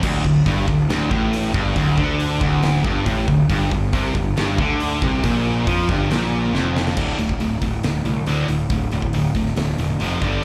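A swaggering, powerful hard rock passage, cut from a longer piece, opens with three picked electric guitars, a fuzz-laden bass and a huge arena drum kit all playing together from the first moment. The high-gain distorted guitar sits up front with a bright, searing riff, while a sludgy overdriven guitar and a crunchy, double-tracked overdriven guitar fill in the background with a rounder warmth, all three carrying a slapback echo. Just as prominent, the picked bass growls low with a direct-and-amped fuzz edge. The acoustic kit brings a punchy kick, a fat snare, hi-hat and crash cymbals with a glittering top, ringing in a big room. A drum fill at 6.5 seconds leads into a new section at 7.0 seconds, where the crunchy guitar drops out and the power chords move from D5 and G5 back to D5, then up to F5 and G5. The whole performance sounds like a live gig heard through the venue's PA, with a light club reverb.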